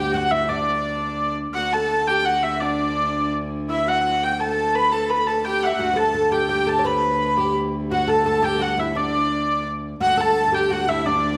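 A clear, biting hurdy-gurdy carries the melody up front in this rustic, festive medieval dance in D major, moving at a brisk 170 BPM in 3/4, over a reedy viola da gamba drone on D2 and a smooth, rich fiddle second line with light vibrato. A woody, plectrum-plucked oud shares that second line from the background, dropping out at 1.3 seconds and returning at 5.8 seconds. The whole excerpt sits in a wet recital-hall reverb with a dark production, cut from a longer piece.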